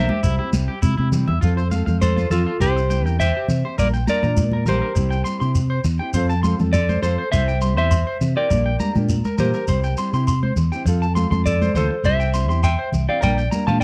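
Highlife guitar band excerpt at 102 BPM in F major with a light sixteenth-note swing and a danceable, warm mood, where a clean, hollow-bodied semi-hollow electric guitar carries the melody up front over a dark, fingerpicked steel-string acoustic guitar with audible finger squeak, a twangy, slightly broken-up electric guitar playing arpeggios through tape echo, a round, amped fingered electric bass also up front, thick-skinned congas in the background and a grainy shekere, all cycling through C, F and Gm/Bb in a dry, close 1970s-style studio sound.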